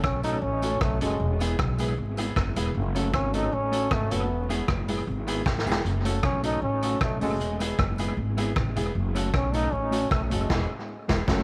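Ska at 155 BPM in F# dorian, driving and energetic, built on an F#m–E vamp where a clear, vintage trombone carries the melody through tape echo over thumpy gut-string upright bass, a gritty, saturated vintage drum kit with dark cymbals and its own tape echo, a mellow tremolo electric guitar, brilliant upright piano stabs with audible action noise in the background, and a very quiet jingly tambourine, all close and dry under vinyl crackle, with a drum fill at 5.5 seconds and a band accent closing this cut from a longer piece at 10.5 seconds.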